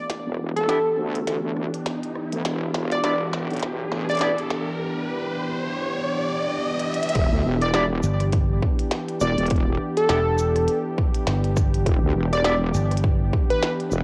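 Heard as a home cassette recording washed in moderate spring reverb, this funky, swaggering glitch hop excerpt swings its sixteenths over a single Em7 chord. Through the build-up to 7.2 seconds, a riser and drum fills from a glitchy kit with a tiny snare and clicky hats support a catchy, detuned unison sawtooth lead with vibrato and tape echo, a smooth chorused analog pad with sidechain pumping and a filter sweep, a heavy, saturated wobble bass up front, and bright, twangy envelope-filtered guitar stabs with 12-bit sampler grit in the background. At the drop at 7.2 seconds, a punchy, layered electronic kick lands up front, and a direct, fingered electric bass joins at 8.0 seconds.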